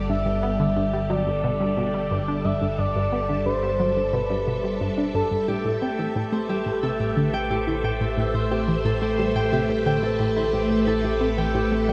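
Bathed in a wet concert-hall reverb, this expansive, cosmic stretch of sequencer-driven space music sets a tight, detuned sawtooth riff from a sequenced synth over a warbling analog drone bass, while a swirling phased string machine holds bright sustained chords, a very quiet bubbling stepped-filter texture sits beneath, and a smooth, dark synth lead with vibrato carries the melody until 5.5 s, when a ringing, fingerpicked concert harp takes up shimmering arpeggios as the harmony moves from Gsus2 to Amadd9.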